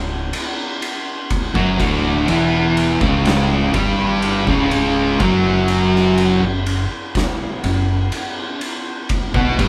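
A straight 4/4 pulse drags through this ominous, sludgy stretch of stoner doom metal, cut from a longer piece, as a double-tracked overdriven guitar and two thick fuzz guitars sitting in the background grind out a low riff that moves from C#m to Gmaj7/F# at 5.2 seconds. Beneath them a bright, punchy fingered bass with overdrive adds weight, and from 0.3 seconds an oversized low-tuned drum kit, up front, saturated and gritty with a rolled-off top, pounds kick and medium-tuned snare under dark ride cymbal in a stone-room sound. The band plays live in one room with light reverb, giving the whole a heavy, enveloping mass.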